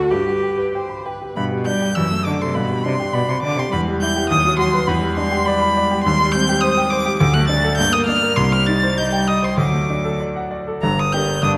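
Urgent and dramatic, this quick classical-period movement for piano trio unfolds in 2/4 with a rubato feel, turning from major to minor at 6.0 s. An up-front violin sings the melody with rich, focused vibrato, while a bowed cello carries a smooth-topped second line beneath it. A clear yet slightly worn concert grand with deep bass supplies the accompaniment, all set in a wet concert-hall reverb, and the passage is cut from a longer piece.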